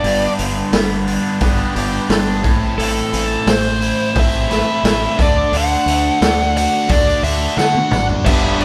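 A dark, smooth overdriven lead guitar carries the melody from the start over a crunchy rhythm guitar, a bright phased guitar riff and a growling fingered bass, all moving through G, Amadd9 and D in a swaggering, confident classic rock groove at 88 BPM. A raw garage drum kit sits up front with a boomy kick, dark cymbals and a gritty, pumping small-room sound, and it plays a fill at 7.6 seconds, while a very quiet jingly tambourine joins at 2.8 seconds. Just before this cut-off passage ends, a biting double-tracked guitar enters in the background at 8.2 seconds, and the whole band sounds live in one room with light reverb.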